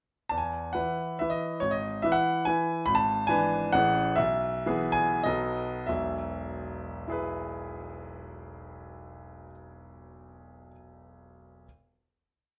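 A clear grand piano opens at 0.3 s on an E5 chord, setting off a short, complete romantic classical piece in the manner of a triple-time dance in 3/4 and E major, with dotted rhythms and a rustic, proud character. The solo piano carries a single-line melody over bass and chords that stress the second or third beat, moving through E/G#, E7/G#, Amaj7, E/B and B7 with a free, rubato feel, the tempo ranging between 86 and 152 BPM. From 2.3 s the music slows down, leading into a final E major chord at 5.9 s that is held until 9.4 s. The piano's tone is natural and up front, spanning from deep E1 in the bass to B5 at the top. A moderate large-studio reverb gives the sound a sense of space, and the tuning sits at A4 = 441 Hz.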